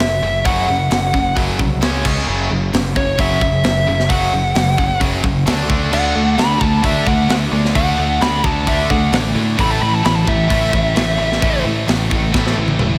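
A dark, high-gain lead guitar carries the melody from the first moment, its distorted tone trailed by slapback echo and delay until it drops out at 11.6 seconds. This relentless, aggressive heavy metal excerpt, cut from a longer piece, moves in a straight 4/4 feel. Underneath, a heavy high-gain guitar with slapback echo and a tight, bright distorted guitar grind out riffs in the background, joined at 5.9 seconds by a double-tracked distorted guitar that adds more slapback-tinged weight. A modern picked electric bass with a bright, direct tone anchors the low end. Up front, a gritty, saturated drum kit with a high-tuned snare, tight kick, hi-hat, crash cymbal and toms drives the music and closes with a fill at 12.3 seconds. A lush hall reverb gives the whole mix a big arena sound.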